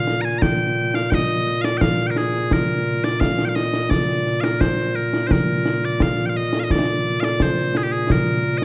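A dark production in a moderate recital-hall reverb carries this stirring, ceremonial stretch of traditional Scottish pipe music at 86 BPM in Bb mixolydian, with loud, piercing solo bagpipes holding a continuous, up-front melody from the start while a close, acoustic concert snare and bass drum with bright cymbals join at 0.1 seconds, the same strain played twice before the cut ends at 8.6 seconds.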